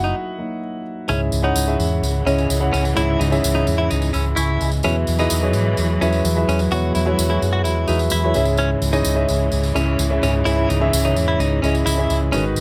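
This driving, bittersweet piano-driven pop piece, cut from a longer song, opens at 128 BPM in a straight 4/4 with a dark, mellow grand piano up front, its action noise audible, over a round, hollow-body electric bass, a lush bowed string section and a clean electric guitar riff. The piano carries the accompaniment with a smooth, intimate, vintage character, while the fingered bass sits equally forward with an amped, dark tone. In the background, the distant string ensemble holds sustained chords, expressive with vibrato and portamento. The guitar, recorded direct and compressed, picks its riff in a narrow range with a subtle chorus. A jingly acoustic tambourine joins at 1.1 seconds as the harmony moves from D#m/F# through C#m and Eadd9 and back to C#m, all set in a light reverb.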